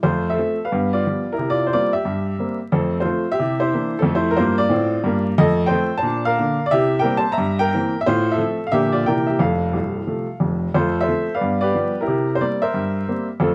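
A brisk, swinging 4/4 pulse at 179 BPM drives this playful, exuberant stride piano piece in F major, with the eighth notes given a lilting swing. A solo upright piano carries everything from start to finish, ranging from C1 up to Bb5, and its tone is clear and woody, placed up front with a natural feel. The harmony moves quickly through F, G7 and C7, touches on a C9, then passes through Bb and a C7/G to F/A before returning home to F. The opening phrase runs to 10.7 seconds, and a second pass through the same material begins there and carries on until the cut at 13.5 seconds, as this is a fragment of a longer performance. A moderate club reverb gives the piano a small-room glow, while a layer of vinyl crackle lends the sound a vintage patina.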